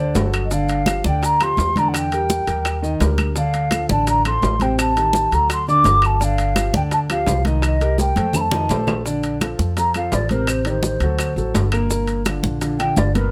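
Sophisticated and sunny, this excerpt of brisk Afro-Cuban jazz at 169 BPM sets a pure, hollow wooden flute with vibrato over an intimate grand piano with audible action noise, a dark pizzicato upright bass up front, bright damped congas, round low-tuned bongos, ringing timbales, grainy maracas and vintage woody claves in a close, dry sound, with a drum fill at 8.0 seconds leading into a flute solo from 9.1 seconds.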